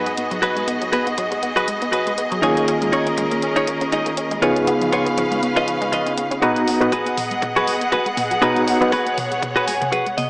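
An overdriven reed electric piano opens this groovy, sleek nu-disco excerpt, gritty and up front through a combo amp with fast tremolo, dub echo and a filter sweep. Beside it, a rich symphonic string section holds lush, bowed chords with vibrato, while a round, nasal analog pluck spins arpeggios through chorus, phaser and digital delay. A clean, direct-recorded electric guitar plays a picked, compressed riff softened by a low-pass filter and dub echo. A layered, overdriven pop drum kit of hi-hat and toms sits underneath over a lightly swung feel, and the piano, strings and pluck pump against the beat as the harmony moves from G#m7 through D#7sus4 and C#7 back to G#m7. At 6.4 seconds a build-up begins with a drum fill, a filter sweep on the pluck and a knocking electronic kick in the background; the electric piano drops out at 8.9 seconds, and a guitar fill arrives at 9.4 seconds. The whole mix sits in a moderate hall reverb with a small-speaker character.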